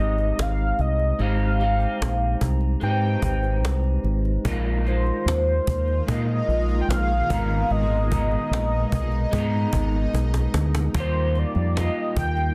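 Lightly reverberant and densely limited with a modern master, this hazy, sunny stretch of indie and bedroom pop moves at a relaxed 74 BPM over Abmaj7, Bb7sus4 and Abmadd9 before landing on Ebadd9. A velvety, detuned synth lead carries the melody up front with slapback echo and plate reverb, while a twangy, slightly broken-up guitar through a small old amp soaked in lush chorus and vibrato, a mellow tine electric piano with a cassette-tape tint, and a woody cajon with faint snares fill out the accompaniment above a round, punchy, dark dub bass. A shimmering, ethereal pad with octave-up shimmer and phaser enters at 5.2 seconds and drops out at 10.9, just after the cajon begins a fill at 10.1 seconds.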